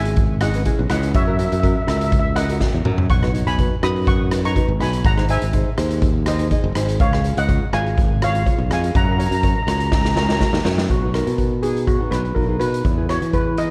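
A shimmering, metallic lead steel pan carries the melody in this festive, carefree calypso excerpt, struck with hard rubber sticks and set in a boxy small room. Beneath it, a dark, classical nylon-string guitar is fingerpicked with audible finger squeak, while a growly, punchy electric bass sits up front with a bright, direct tone. A polished street-band drum kit in an airy big room adds a boomy kick, a medium-tuned snare, hi-hat, rim clicks and toms, with fills at 2.6 and 9.9 seconds. The pan takes a solo from 10.9 seconds as the harmony moves to a new passage, all over a gentle 16th-note swing. Light reverb and a worn, warbling cassette-tape character with drifting pitch give the recording an aged feel.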